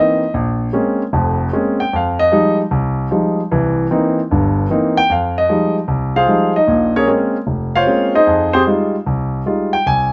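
A polished, up-front grand piano carries this solo jazz passage alone from start to finish, its present tone spanning F1 to Ab5 with a swing on the eighth notes. The cool, moody harmony moves through minor ninth chords such as Bbm9 and Fm9, with a tense C7#9 at 3.5 seconds before the opening phrase returns at 5.1 seconds. Light reverb gives the piano a little space, and the passage is cut from a longer piece.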